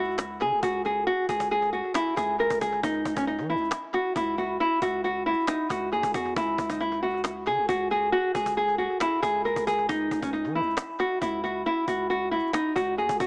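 Eerie yet hard-hitting, this half-time trap and hip hop excerpt moves at 136 BPM in C# dorian, resting on a C#sus4 chord across its 13.3 seconds. Up front, a small, fingerpicked nylon-string guitar carries the melody through a low-pass filter and tape echo, while a deep, mellow 808-style bass with a fast attack sustains long, decaying sine tones beneath it. A snappy cajon played with hard hands sounds close and dry, also treated with tape echo, and the echo-heavy mix, set in a small room with light reverb, has a small-speaker character.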